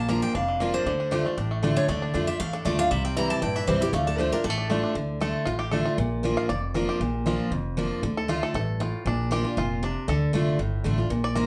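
A twangy banjo played with fingerpicks takes a solo from 5.0 seconds in this rustic, driving bluegrass passage in D minor at 234 BPM, after a bright, dreadnought-bodied steel-string guitar carries the picked melody with audible finger squeak until 4.8 seconds, over a full, jumbo guitar's accompaniment and a woody, thumpy pizzicato upright bass on gut strings, the group heard from further back in a short, wet studio reverb.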